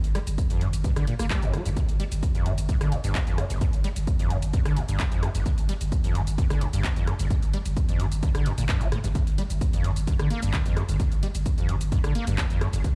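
This driving peak-time techno cut runs at 130 BPM in a straight 4/4, its electronic kick drum landing up front from 0.4 seconds with a heavy, layered punch and a tape-saturated edge. Around it, a techno drum kit of handclaps, hi-hat, rim click and shaker keeps the groove moving, its hats carrying a mellow, analog-tinged sheen. Underneath, a growling 808-style bass sits in the background on G1, buzzy yet sine-based, with a fast attack and decay, low-pass filtered and pumping against the sidechain. The star is a screaming acid line in G minor, squelchy and aggressive, a resonant sawtooth with a filter sweep that ranges from G1 to Bb3, pushed up front with distortion, ensemble chorus, delay and its own sidechain pump. The mood is industrial and relentless, a short slice of a longer track that sounds as though it was played on a big sound system in a bare room, with the drums re-recorded in a small space.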